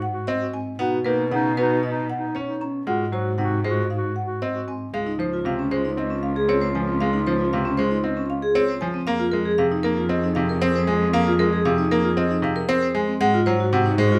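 Light reverb frames this excerpt from a longer classical piece, with the bright, intimate grand piano and the closely captured bowed cello sitting up front. Written in a minimalist pattern style at 116 BPM in a straight 4/4, the music feels urgent and hypnotic, settling into Db major at 4.9 s. A woody marimba with medium hard mallets carries the melody on percussive padauk bars in a boxy small-room tone, while a clear clarinet in classical style plays a second line alongside it. A single rich cello supplies the bass with vibrato, soft attacks and expressive portamento, and from 0.3 s the brilliant, slightly worn piano adds accompaniment with audible action noise and deep bass. From 0.5 s a metallic vibraphone, its motor off, rings out arpeggios.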